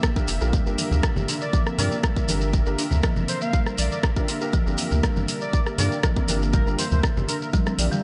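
A straight 4/4 afro house groove, hypnotic and warm, opens on a Gm7 chord and is driven by a punchy, tape-tinged electronic kick up front and a deep, round sine sub bass entering at 0.3 seconds, with an afro-pop kit of dark hats, rim click and toms, a grainy close shekere and soft-handed congas from 0.8 seconds, under a chorused, detuned sawtooth pad, a woody dry marimba arpeggio and muffled felt-muted piano stabs with audible action noise, all pumping against the kick, while a smooth, vibrato-laden synth lead sings from 1.4 seconds before a drum fill at 7.5 seconds closes this cut from a longer piece in a small, lightly reverberant room.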